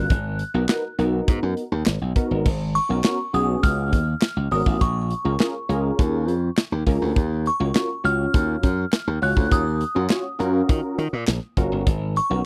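Late-night and slick, this early-eighties boogie funk moves at a straight, steady stride, with a punchy, up-front slap bass and a polished acoustic drum kit of punchy kick, medium-tuned snare, handclaps, hi-hat and bright crash driving it. A dark, detuned sawtooth polysynth with a filter pluck and moving notch comps through chorus, while a glassy, crystalline FM bell carries the high melody, warbling with chorus, tremolo and slapback echo. The dry, close studio sound keeps every part present as the chords move from G#m7 through G#m11, A#m7 and D#m9 before returning to G#m11 at 11.9 seconds.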